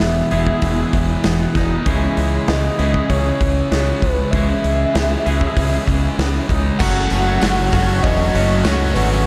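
Shoegaze and dream pop rock at 97 BPM, blissful and hazy, with a breathy, flute-like synth lead carrying a soft, sustained melody with vibrato over a twangy clean guitar arpeggio and overdriven, fuzz-thick guitar riffs, one of them wrapped in reverse reverb. A growling, overdriven fingered bass and a punchy, up-front rock kit with bright cymbals anchor the Emaj7 and C#m7 harmony, all soaked in lush hall reverb. At 6.8 s the music shifts to F#m as a tight, double-tracked distorted guitar and a very quiet, jingly tambourine join in this short cut from a longer piece.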